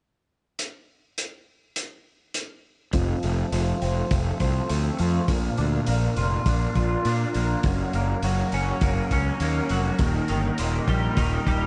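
This trippy, hypnotic psychedelic rock excerpt at 102 BPM in 4/4 features a punchy, overdriven fuzz bass. A muffled, lo-fi drum kit of hi-hat and tight kick plays alone from 0.6 seconds until 2.9 seconds, when the bass, a twangy, flanged twelve-string electric guitar riff and a reedy tonewheel organ with key click and fast rotary swirl in the background all enter over chords of F, Bb, F# and Eb. A filter sweep runs through the second section, and the dreamy mix is soaked in a huge ambient reverb with a dark, rolled-off top.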